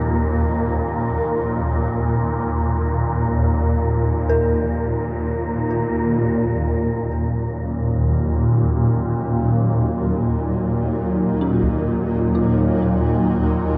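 Dark ambient drone in free time and Eb minor, ominous and tense, where an up-front swarming drone warbles through phaser and granular haze beneath a blurred, full-bodied granular cloud pad, a very quiet eerie FM bell traces inharmonic arpeggios with chorus, an airy wind-like noise texture breathes until 6.0 seconds as the harmony settles from Db/Eb onto Eb minor and returns briefly at 13.5 seconds, and a faint, close taiko ensemble strikes with hard sticks at 11.6 seconds, all suspended in a vast, echoing cathedral space.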